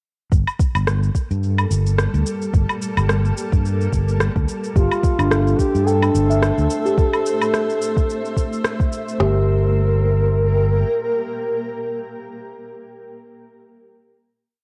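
Heard through worn, warbling cassette tape with light reverb, this meditative organic downtempo piece swings gently as a soft-kicked, woody-snared electronic kit and a layered cabasa, woodblock and rim-click beat lock in with a growly, up-front fretless electric bass in a dotted rhythm; a cloudy, detuned granular pad drifts in at 1.5 seconds, and from 4.8 seconds a mellow duduk with vibrato and scooped notes spins arching motifs over the round, ringing 16-step pattern of a steel tongue drum, both echoed by digital delay, until the groove gives way to a final held chord at 9.2 seconds.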